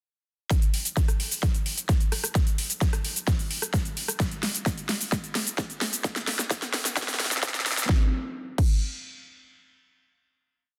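A punchy, layered electronic kick drives this euphoric, powerful EDM piece with a four-on-the-floor pulse, playing from 0.5 seconds together with an overdriven big-room drum kit of huge snare, metallic closed and open hats, rim clicks, shaker and crash. Together they form a build-up with a drum fill and filter sweep that runs to 7.9 seconds, where a final hit lands, and both drum parts stop at 8.7 seconds. The sound is dense and heavily limited, with light reverb and a digital ambience.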